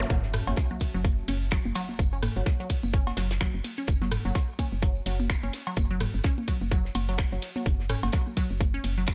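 Sparse and cool, this short minimal techno excerpt runs at 127 BPM in 4/4 with a 16th-note swing, dropping in at 0.1 seconds with an impact. A tight electronic kick sits up front, joined by a garage kit of finger snaps, warm hats, ride and rim clicks, a booming analog drum machine adding cowbell, rim click and toms through delay, a jingly acoustic tambourine in a live room, and a very quiet, dry 70s kit with a fat snare and hi-hat. Underneath, a woody, round FM bass holds F#1 with a dark, decaying tone and sidechain pumping. The riff comes from a juicy, squelchy resonant blip pluck, detuned square and sawtooth with a noise layer, moving between F#3 and C#4 through phaser, delay and pumping. A very quiet zap and sub drop marks the opening 2.0 seconds, and a digital ambience frames the mix around an F#5 chord.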